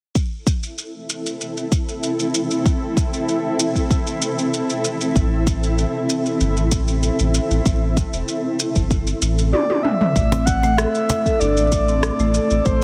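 Earthy and mystical, this short excerpt of organic downtempo moves at 96 BPM in a straight 4/4, settled in A minor over an A minor chord. A granular cloud pad holds sustained, blurred chords with a slow attack and long release, its detuned, evolving body roughened by vintage 12-bit sampler grit, shimmer reverb and sidechain pumping. A deep, layered electronic kick sits up front from 0.2 seconds alongside an organic electronic drum kit of rim click, shaker and toms that sounds re-recorded in a small room, and a round sine sub bass arrives at 5.2 seconds, its level also shaped by sidechain pumping. As a drum fill begins, a breathy, flute-like synth lead enters at 9.5 seconds with vibrato, chorus, tremolo, tape echo and shimmer reverb, and at 10.2 seconds a rosewood marimba played with medium mallets adds arpeggios through tape echo. A close, dry cajon struck with hard hands, its faint snares audible, appears briefly in that closing section. 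The whole mix sits in a lush hall reverb and carries a heavily compressed, radio-like sheen.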